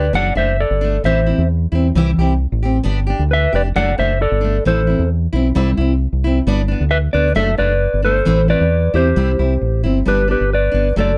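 Set in a light reverb, this short highlife guitar band excerpt in G major moves at a danceable 133 BPM in straight 4/4, with a clean, dark, up-front mellow electric guitar carrying the melody over a fresh-stringed, full-bodied jumbo steel-string acoustic guitar whose picked accompaniment shows finger squeak, while a round, punchy fingered electric bass anchors a repeating D/F#, Am, C, G progression that settles on G at 10.1 seconds.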